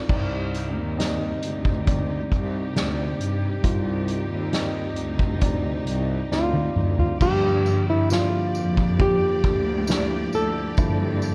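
A thumb-plucked flamenco guitar, dark and boxy and up front, enters with the melody at 6.3 seconds over a drum fill in this tender, heartfelt pop ballad excerpt at 67 BPM in 4/4, moving from Cmadd9 to Gm7 at 7.2 seconds. Beneath it, a mellow, clean tine electric piano carries the accompaniment while a lush symphonic string section holds sustained chords and a shadowy, bowed cello section plays the bass line with vibrato. A soft-mallet drum kit with a punchy kick sits up front in a roomy space, a jingly tambourine joins at 7.2 seconds, and the whole mix carries a small-room ambience and the worn, warbly pitch drift of old cassette tape.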